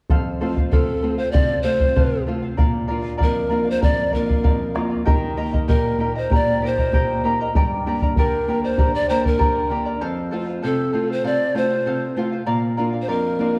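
A straight 2/4 pulse at 97 BPM drives this festive yet melancholic Andean folk excerpt, where a round, vintage bombo thumps up front until 9.5 s beneath a fingerpicked nylon-string guitar and a mellow, shimmering charango with double strings, while from 0.7 s a polished, airy wooden pan flute carries the tongued melody with vibrato and chiff, all set in a dark production with a wet recital-hall reverb.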